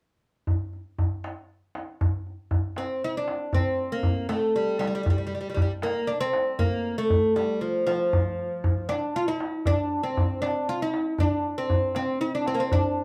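Persian modal ensemble music in the dastgah of shur on D, this excerpt carries a melancholic, soulful mood at 118 BPM in a straight 3/4. The tombak opens at 0.5 seconds, its tight, vintage, band-limited tone sitting up front. At 2.8 seconds the oud joins with the melody, moving between F3 and F4, its bright, woody, fretless voice plucked with a plectrum on doubled strings and placed close to the listener. Both instruments play on together through to 13.0 seconds, with a shift into a new section arriving at 3.5 seconds. The pair sits in a short, wet studio reverb and is heard from further back in the room, lending the playing a sense of space.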